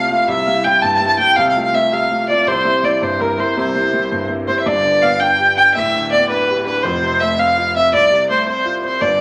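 A dark, woody fiddle carries the melody up front, played by a single bowed player with light vibrato and portamento, its tone touched by a distant quality. This rollicking, cheerful Celtic jig in 6/8 moves at 110 BPM and is cut from a longer piece, shifting from C mixolydian to G mixolydian at 4.7 seconds. A very quiet, mellow Celtic harp, fingerpicked and ringing, adds a second line in the same register as the fiddle. A grand piano supplies an intimate, boxy accompaniment with long sustain and audible action noise. The harmony moves between C and F/C before turning to G and then F, with moderate large-studio reverb and a layer of vinyl crackle over the recording.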